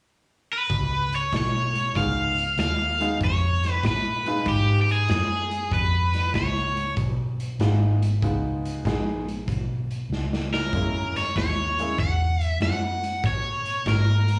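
Laid-back and swaggering, this excerpt of an electric blues shuffle at 96 BPM in Db mixolydian features a bright, overdriven stack guitar carrying the melody with slapback echo from 0.5 seconds, backed by a round, foam-muted fingered bass and a gritty, punchy garage drum kit with a drum fill at 10.1 seconds, while a woody upright piano with slapback echo adds accompaniment from 2.0 to 12.0 seconds over Db9 moving to Gb9, all heard as a live gig through the venue's PA with club ambience.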